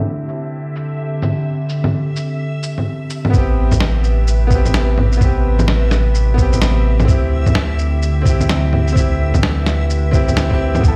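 Future garage with a rainy, melancholic mood, swung on the sixteenths and cut from a longer piece. A clear, woody upright piano plays accompaniment from the start, pumping with the sidechain and trailed by delay, while a reversed, swelling texture glints high above with dreamy, granular shimmer. Just behind the piano, a warbling, lo-fi pad holds dark, detuned chords in the background, nostalgic with chorus and its own reverb, moving from D7sus4 to Am9 and back. Sampler-style cabasa, bongos, shaker and a medium-tuned snare sit up front, pitched down, muffled and tape-warm, while a filter sweep opens the first 3.3 seconds. At 3.3 seconds a thumpy, compressed kick and a deep, round sine sub bass arrive together, the bass pumping under the kick. The whole mix sounds as if played through a big system in a bare stone room, softened by a low-pass filter.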